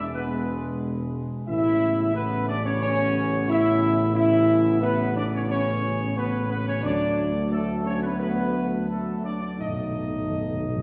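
Mellow French horns carry the sustained chords at the heart of this regal, solemn classical brass passage at 89 BPM, with a distant, roomy trumpet section singing the melody above and smooth-topped trombones filling in the harmony beneath. An up-front tuba with light vibrato anchors the bass as the chords move from E through Aadd9 and D to B7. At 9.6 seconds, articulate timpani struck with hard mallets add a fill, all set in a wet scoring-stage reverb heard from further back in the room.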